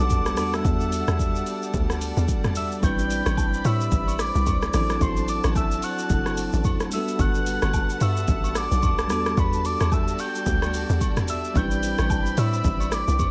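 A dry, close-sounding excerpt of hypnotic, deep amapiano in A dorian at 110 BPM, where a hollow, bouncy log drum bass and an up-front deep house kit with a deep kick, hi-hat, rim click, shaker and toms drive a swung 16th-note groove. Over a cycle of Em11, Am11, D7/A and Gmaj9, a bell-like tine electric piano carries the accompaniment and a lush studio string section holds sustained chords. A soft, round, octave-layered synth lead with chorus and vibrato sings the high melody, while agogo bells and woodblock join in the background at 2.8 seconds.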